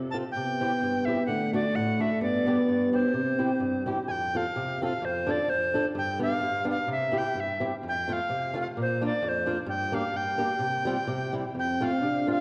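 A bright, reedy tenor recorder carries the melody up front in this bouncy, jolly alpine folk dance, its airy, tongued tone showing chiff and vibrato under a tape echo. A boxy, fingerpicked acoustic guitar, also up front, keeps a swung accompaniment throughout, while a dark, classical-style euphonium adds a second line until 3.9 seconds and returns at 11.5 seconds, after the music moves into a longer second section at 4.1 seconds. This cut from a longer piece sits in a reverberant recital hall with a loose, rubato swing, heard through worn, warbling cassette tape.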